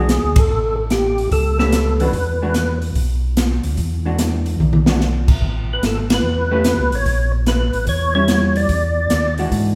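A greasy, bluesy soul jazz organ trio opens at once, with a fat, percussive tonewheel organ carrying the melody through a slow rotary speaker and chorus vibrato, its third-harmonic percussion and key click up front. Beneath it, a second tonewheel organ handles the bass line in a mellow, round, dark tone, also turning slowly through a rotary speaker. A dark, clean hollow-body electric guitar picks out accompaniment, and an airy, polished big-band drum kit swings at 146 BPM in E mixolydian, with a punchy kick, medium-tuned snare, hi-hat, ride, crash and toms, plus band accents. The lead organ drops out at 2.8 seconds, the drums play a fill at 4.6 seconds, and the melody returns at 5.7 seconds as the harmony moves from E9 and A9 through Aadd9 and A#dim7 before landing back on E9. Recorded live in one room with a wet, large studio reverb, this cut from a longer piece keeps a greasy, bluesy feel.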